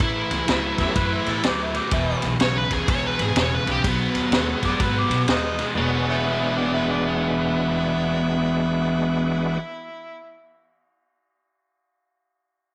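A swung 125 BPM shuffle in 4/4 drives this gritty, rollicking electric blues in E mixolydian, set by a punchy, up-front vintage drum kit with a high-tuned snare, kick and dusky ride that stops at 5.7 seconds, alongside a woody, growly pizzicato upright bass and a picked, overdriven electric guitar riff. A smooth, dark overdriven lead guitar carries the melody, while a distant, roomy harmonica with tongue slaps, scooped notes and light vibrato weaves a jazz-style second line from 0.8 seconds, and a bright, shouting tonewheel organ with slow rotary speaker and chorus vibrato appears briefly, then returns at 4.3 seconds. The chords move through A9, E5, B9 and E13 in a small room with light reverb, in a short cut from a longer piece.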